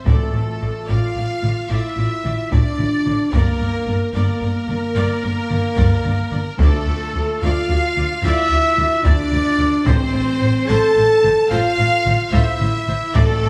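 Epic orchestral film score in D minor, this dark, dramatic passage moves at 74 BPM in a broad 12/8, cut from a longer piece and running about 13.5 seconds. A bright, focused violin section carries the lush, bowed melody up close, while a second, more distant violin section and a very quiet, airy flute ensemble add supporting lines, and clear, intense violas fill in the accompaniment in the background. Up front, a dark, roomy French horn section holds sustained chords, and a dark trumpet section with a smooth top punctuates with stabs. Cellos and a rich, smooth double bass section anchor the low end, joined by hard-stick taiko drums that sound compressed and saturated. Close, dry timpani on soft mallets strike briefly at the opening, then return from 6.6 seconds onward as the harmony moves from Dm/A through Gm and Dm to Am. Moderate scoring-stage reverb gives the ensemble a sense of space, with a touch of small-room ambience.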